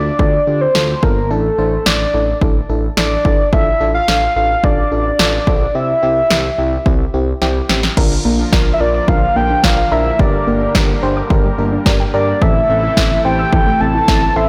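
A punchy analog drum machine drives a straight 4/4 beat with an up-front kick and snare, rolling into a fill at 7.4 seconds in this melancholic, nocturnal synth-pop fragment cut from a longer piece. A round, octave-layered synth lead carries the melody up front with chorus, vibrato and digital delay, over a warbling FM electric piano with tremolo and a smooth, mellow synth bass. At 8.0 seconds a brassy, bright analog pad and a dusty, lo-fi pluck playing arpeggios join in the background, all set in a moderate scoring-stage reverb on a blown-out, overdriven recording.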